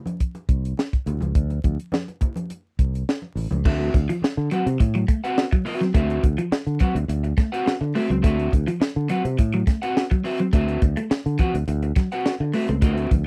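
A tight, dry funk drum kit sits up front with bright cymbals, a high-tuned snare and a tight kick, joined from the start by ringing, low-tuned congas and, half a second in, a growly, punchy fingered bass in this playful, energetic excerpt from a longer piece. At 3.7 seconds two slightly broken-up, picked electric guitars enter over a D13 chord, one dark and playing accompaniment, the other compressed and carrying a phaser-coloured riff, while the congas drop out until a brief return at 13.1 seconds. The sound is a close, 1970s-style studio recording with little reverb and a layer of vinyl crackle.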